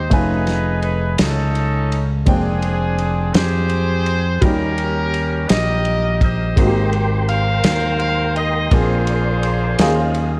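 A tight, vintage-toned horn section carries the melody up front with light vibrato, phrased in a jazz style between C4 and F5. The piece is slow, reverent and uplifting gospel in 6/8 at 56 BPM, counted in dotted quarters and set in Ab major, moving through rich chords such as F7alt, Abmaj9 and Bb9. Beneath the horns, an intimate, natural-sounding baby grand piano plays accompaniment with short sustain and audible action noise. A punchy fingered electric bass, direct and amped, holds the low register. A dry, muffled soul drum kit with a tight kick, a medium-tuned snare and dark ride cymbal keeps time with a lo-fi, rolled-off top. At 6.6 seconds a soft, flute-like tonewheel organ enters with sustained chords through a fast rotary speaker and chorus vibrato, and a moderate recital hall reverb surrounds this short passage cut from a longer piece.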